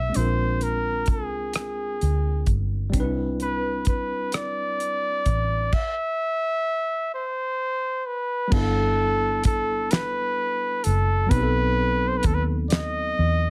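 A close-miked flugelhorn with scooped, jazz-style notes and slapback echo leads this tender, sensual slow six-eight R&B fragment at 43 BPM in G major, tuned to A4 = 437 Hz, carrying the melody over a worn, slightly out-of-tune tine electric piano lightly overdriven through its built-in speakers, a dark, round, foam-muted fingered electric bass, and a dry, damped 70s drum kit that enters at 0.1 s with a fat snare, tight kick, rim clicks, hi-hat and crash, set in light reverb as the harmony moves from Bb9 and Cmaj7 toward G6 and B7b9.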